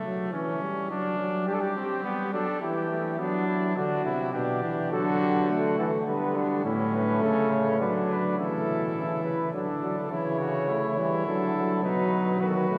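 Joyful and lively, this classical imitative canzona for brass ensemble moves at 104 BPM in a straight 3/4. It is cut from a longer piece and heard from far back in a cathedral's long, wet reverb. A clear trumpet second line and a vibrato-tinged trombone accompaniment, set up front, open the music, and a mellow, distant cornet takes the melody at 1.5 seconds with light vibrato and a soft attack. A bright bass trombone enters up front at 4.9 seconds to anchor the bass, and the music shifts into a new section at 8.4 seconds.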